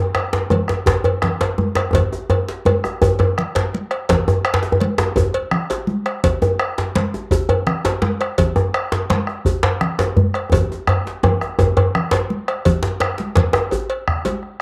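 A tight, cracking djembe played with hard hands and buzzing metal rattles and a round, up-front bombo open this earthy, driving West African drum ensemble excerpt in 12/8, joined by a metallic, dry cowbell, a second softly played djembe up front and bright, damped congas in a small room, with drum fills arriving at 1.9 and 10.5 seconds.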